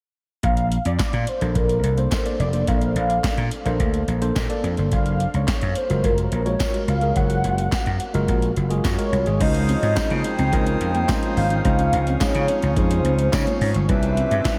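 A straight 4/4 groove at 107 BPM drives this feel-good, smooth slice of early-eighties boogie funk, cut from a longer piece, built on an up-front analog drum machine with a deep kick, punchy snare, metallic hats, handclaps and crash, all carrying a tape-warm sheen from being re-recorded in a small room. A vintage slap bass sits just as far forward, warm, amped and punchy, while a jingly tambourine shimmers in the background and a clean tine electric piano joins at 1.4 s through a combo amp. On top, a velvety synth lead of detuned sawtooth and triangle tones carries the melody with a fast attack, sustained notes, vibrato and chorus. At 9.4 s a reedy, hollow, close-miked accordion adds full sustained chords, and a very quiet, twangy picked electric guitar plays a bright riff. The harmony glides from Bbmaj9 to Gbmaj9, then Dbmaj9 and Cmaj9, and the whole mix floats in a dreamy, cathedral-sized reverb.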